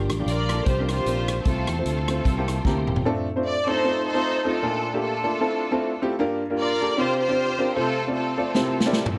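A rich studio string section carries the melody in this short, soulful and hopeful uptempo gospel clip in F major, its bowed ensemble tone smooth and even with light vibrato, sitting up front with an analog delay. Beneath it, an intimate upright piano with woody character and audible action noise plays accompaniment throughout, adding a fill from 2.5 to 3.0 seconds. For the opening 3 seconds, a tonewheel organ holds sustained chords in the background, piping and lightly overdriven with key click, chorus vibrato and a fast rotary speaker, while a fingered electric bass, direct and amped, sits up front. A swinging big-band drum kit with a punchy kick and medium-tuned snare, heard in a big natural room with analog delay, drives the 153 BPM swing feel, drops out after a fill from 2.7 to 3.0 seconds and returns with another fill from 8.5 seconds. Chords move through Gm7, C9sus4 and F/C to C7, and the echo-heavy mix is finished with light studio reverb.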